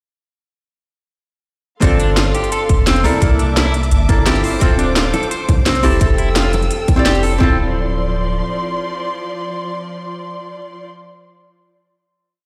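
Liquid drum and bass with a melancholic, dreamy feel, where a tight, tape-warm electronic kick and rolling two-step kit with cracking snare and crisp hats drive a drop from 1.8 s under a deep sine sub bass, dark hollow-body archtop guitar chords with dub echo, bright clean electric guitar arpeggios through digital delay, and lush bowed strings with sidechain pumping, while low-tuned bongos join in the background at 5.1 s, before a final Dm7 chord rings out from 7.4 s in a large studio reverb.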